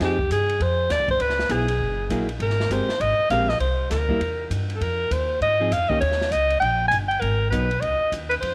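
A clear, up-front alto saxophone carries the melody with light vibrato, subtone, soft attacks and scooped notes over a relaxed, sophisticated small-group swing-and-bop groove at 199 BPM, backed by a woody, growly pizzicato upright bass, clean picked hollow-body guitar comping through changes from Fm7 until it drops out at 7.7 s, and a smooth acoustic kit with boomy kick and dark, rolled-off ride and hi-hat, all set in light reverb and small-room ambience in this 8.5-second cut from a longer piece.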